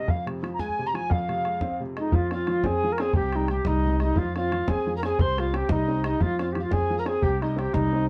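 Spirited and wild, this Celtic jig in 6/8 puts a pure, vibrato-rich wooden baroque flute up front on the melody, joined by an airy, chiffy tin whistle on a second line, over a clear upright piano with audible action noise and a tight, damped bodhran, while a steel-strung pizzicato upright bass joins at 2.1 s, the whole set in a dark production with moderate studio reverb.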